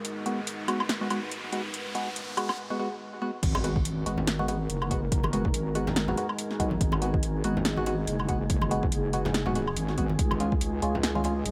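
A heavy, wobbling bass of square and sine tones sits up front in this cavernous, brooding deep dubstep excerpt, and it arrives at the drop at 3.4 seconds. An overdriven electronic kick and very quiet, ringing congas and bongos played with hard hands in a small room enter with it. Before the drop, a short build-up pairs an electronic riser with a filter sweep on a hollow, organ-like stab, a brief break falls just before the bass comes in, and an electronic impact lands with the drop. The stab's percussive, decaying hits carry chorus, phaser and dub echo, and they recur through the whole passage. A punchy, overdriven house kit with metallic hats, snare, crash and woodblock drives a swung, half-time 4/4 feel from the opening. Beneath these, a moody, detuned sawtooth pad holds sustained chords from G#m7 to C# near the close, and from 5.1 seconds an airy, breathy, wind-like noise texture drifts in the background under light digital ambience.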